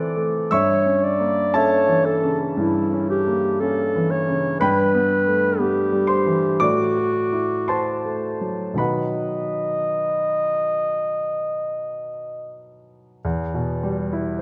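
A slow, rubato 4/4 pulse carries this yearning, elegiac fragment of a romantic classical duo, where a dark, smooth-topped clarinet sings the melody up front over a polished grand piano accompaniment in a moderate concert hall ambience, the clarinet falling silent at 12.6 s while the piano sounds on alone until 14.4 s.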